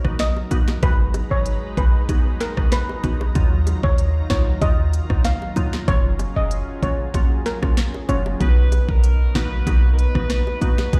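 Bouncy and sultry, this dancehall cut rides a straight 4/4 groove built on an overdriven, up-front electronic drum kit with a knocking kick, sharp snare and crisp hats, joined by a deep, boomy 808-style bass and tight, high-tuned bongos tucked in the background from 0.4 seconds. A glassy, crystalline wavetable pluck pumps against the beat with chorus while a lush, thick unison pad holds sustained chords through a progression that opens on Bmaj7, and a shimmering steel pan carries the delayed melody from 0.2 to 8.2 seconds. At 8.4 seconds a dark, tight horn section with light vibrato enters with a second line, all set in a large studio reverb that suggests a big sound system in a bare room.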